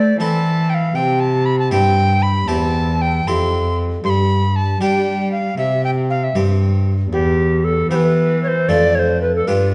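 This is a baroque-style classical sonata movement with continuo, a grave and solemn fragment cut from a longer piece, moving in a steady 12/8 metre. A tenor recorder carries the melody from start to finish, its wooden tone airy and bright, with a crisp, chiffy attack, vibrato and a close, up-front presence. Beneath it a single bowed cello holds the bass line, warm and expressive, with vibrato and portamento that lend the line a singing, mournful quality. A Flemish-style harpsichord with one set of strings fills in the accompaniment, its plucked sound airy and bright against the lower parts. The harmony opens on A minor, turns to C, and later passes through E minor before settling on F near the end at 8.7 seconds. All three players sit in a reverberant recital hall, and the overall production leans dark and warm.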